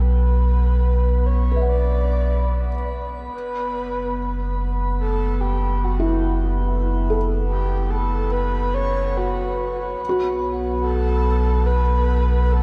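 Bathed in a moderate cathedral reverb, this melancholic, reflective ambient passage cut from a longer piece has a dark, muted felt upright piano playing arpeggios, a resonant drone with moving overtones, and a breathy, flute-like synth lead with vibrato, lush chorus, shimmer reverb and tape echo singing the melody, all three fading in across the 12.6 seconds above a round, up-front sub bass.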